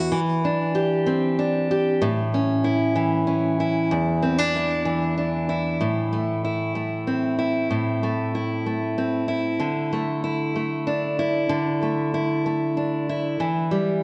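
A full-bodied, up-front fingerpicked steel-string acoustic guitar plays alone through this dramatic, melancholic pop excerpt, moving at 63 BPM in a straight 6/8 and spanning E2 to G4. Delay on the guitar and a wet concert hall reverb with a 1.8 s decay give it a spacious, lingering sound. The harmony moves between Cadd9/E and A before shifting at 5.8 s to Am, then Dsus2, and arriving on a rootless C/E.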